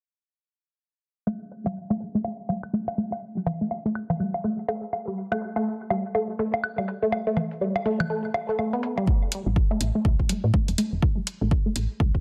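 Minimal techno at 123 BPM in 4/4 with a swung sixteenth feel, this sparse, hypnotic fragment is cut from a longer piece. From 1.3 seconds a squelchy, resonant blip pluck repeats a riff between G3 and B3 over a Gsus2 harmony, its detuned sawtooth tone run through phaser, delay and sidechain pumping while a filter sweeps across it. Overdriven woodblock and congas sit up front with delay, and a quieter layer of electronic shaker and metallic hi-hat ticks along beneath, shaped by high-pass and low-pass filtering. At 9.1 seconds the percussion drops out, the harmony falls away, and a deep electronic kick enters up front in a build-up, soon joined by a round, woody FM bass ranging from E1 to A2 that pumps against the kick. A moderate plate reverb gives the parts a modest sense of space, and the dense, heavily limited master carries a low-pass roll-off.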